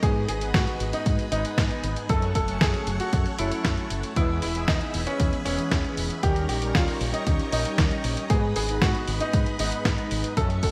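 This 10.7-second excerpt of romantic, playful Italo disco starts with the full band already in motion at 116 BPM in a straight 4/4. A clear baby grand piano with a short sustain carries the melody through a delay, over sustained chords from a lush, vintage string machine that uses a sawtooth tone, a sub octave and an ensemble chorus. Bold, detuned analog synth brass punctuates the music with stabs, its sawtooth character shaped by wave folding, a filter sweep and chorus. Underneath, a fingered electric bass sings through an envelope filter. A gritty, sampler-style kit supplies hi-hat and a fat snare, while a punchy, tape-warm electronic kick sits furthest forward in the mix. The harmony moves G#m, F#m, E, D#7 and back to G#m, set in a lush hall reverb with bright 1980s-style digital production and a layer of vinyl crackle.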